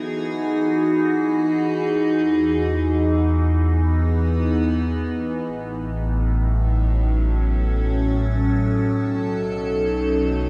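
A bright, morphing wavetable pad sits up front with phaser and its own reverb, sustaining Emaj9, A6 and B7 chords in this serene, reflective ambient fragment, while a round, deep analog bass enters at 1.9 seconds and fades out beneath it, all bathed in a huge ambient reverb within a dark, warm production.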